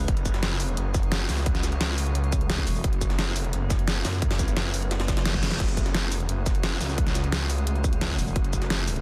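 This excerpt opens on a metallic, inharmonic drone holding sustained chords in the background, its eerie FM tone softened by chorus, built-in reverb and sidechain pumping, while the overdriven dubstep kit brings up-front crash, hi-hat, shaker and a deep snare. It is dark technical drum and bass at 174 BPM in F# minor, mechanical and futuristic in mood, resting on a single F#m chord. From 0.1 seconds a thick, lush detuned saw bass anchors the low end with saturated unison, chorus and sidechain pumping, joined by a punchy overdriven electronic kick. Far underneath, a very quiet jungle sampler-style kit adds gritty, pitched-up hi-hat and a high-tuned snare with a tape-like character. Short stabs of growling FM bass cut in at moments such as 5.1 seconds, where a faint reverse cymbal sounds around a drum fill at 5.3 seconds. The sound is a dense, heavily limited modern master with a digital ambience.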